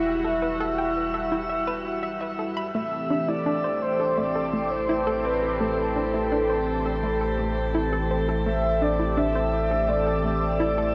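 Cosmic and expansive, this excerpt of ambient, sequencer-driven space music moves at 84 BPM in a straight 4/4, centred on A minor. A breathy, flute-like synth lead carries the melody up front, its soft tone touched with vibrato, lush chorus and tape echo. Beneath it, a sweeping, resonant pad holds evolving, bright chords with a slow filter swell, while a round, deep analog bass sustains the low end. A hollow, bouncy square pluck enters at 0.2 seconds with a mellow riff coloured by chorus and tape echo, and a very quiet, bubbling stepped-filter texture drifts through the opening until 2.8 seconds. The harmony shifts from Emadd9 to Am7 at 2.7 seconds, all bathed in a long shimmer reverb and the warbling pitch drift of worn cassette tape.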